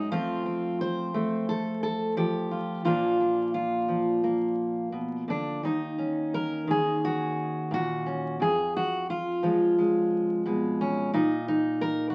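Through the crackle of a very old 78 rpm record and a moderate club reverb, this reflective, intimate folk fragment, cut from a longer piece, presents a solo fingerpicked steel-string jumbo acoustic guitar, woody and full-bodied with old strings and sitting up front, moving at 87 BPM in a straight 4/4 through F, Bb, Ebm7 and Fdim before resting on Bbsus4 at 11.1 seconds.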